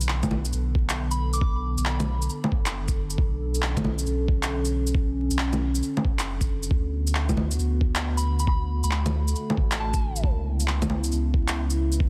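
Vinyl crackle sits over a dense, heavily limited modern master with a dry sound in this nocturnal, rainy future garage excerpt, set in B minor at 136 BPM in 4/4 with a 65% swing on the sixteenths. A warbling, nostalgic pad with a lo-fi, vintage character holds slow-attack chords through chorus and its own reverb, pumping against the sidechain as the harmony moves from Bm7 to D6 and on to Bsus24. Beneath it, a round, sine-based sub bass with tube saturation follows the same sidechain pulse, and a muffled, thumpy, sampler-style kick arrives up front at 0.2 s. Electronic shaker, handclaps and bongos sound produced and tape-softened, re-recorded in a small room and also placed up front. A soft, pure FM bell appears briefly at 1.1 s and again at 8.2 s, its gentle, decaying tones coloured by chorus and delay.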